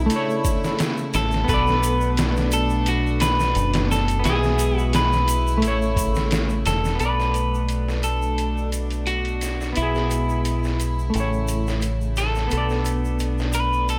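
Trip hop excerpt with a smoky, cinematic mood: a slightly broken-up electric guitar with tape echo carries the melody over a bright, clean semi-hollow guitar with harmonic tremolo, floating bowed strings holding soft-attack chords, a round, punchy dub bass with tube saturation up front, a muffled, pitched-down sampler-style drum kit with overdrive and a thumpy kick, and a quiet tube shaker with group handclap, all moving through A, Bm7 and E/B in a light digital ambience.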